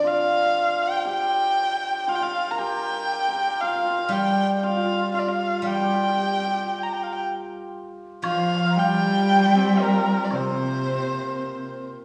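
A slow, straight 4/4 pulse at 59 BPM carries this tender, wistful Chinese chamber piece in G yu mode: an intimate erhu leads up front with light vibrato, portamento and an airy bow over a shimmering hammered dulcimer line and a silvery, fingerpicked steel-string zither, and then from about 8.3 seconds an expressive bowed cello and a distant, hollow bamboo dizi with a buzzing membrane join as second lines, while a close, dry woodblock sits in the background, the ensemble set in a lush, reverberant hall.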